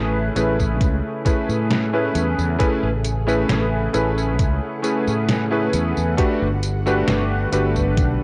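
A slow, straight 67 BPM pulse in 4/4 is set by a thumpy electronic kick and a detuned 8-bit drum machine playing hi-hat, a medium-tuned snare and tambourine, both tape-warm and re-recorded in a small room, with the machine coming in at 0.4 seconds and the kick at 0.6. This faded, dreamy vaporwave fragment in A major is carried by an up-front electric grand piano with a clangy, vintage low end, treated with analog chorus and tape echo, alongside a punchy fretless electric bass and a very quiet, silky string machine holding long, mellow ensemble chords. The harmony rests on Amaj7 before moving to Gmaj7 at 6.2 seconds, all inside light reverb and digital ambience with the character of a home cassette recording.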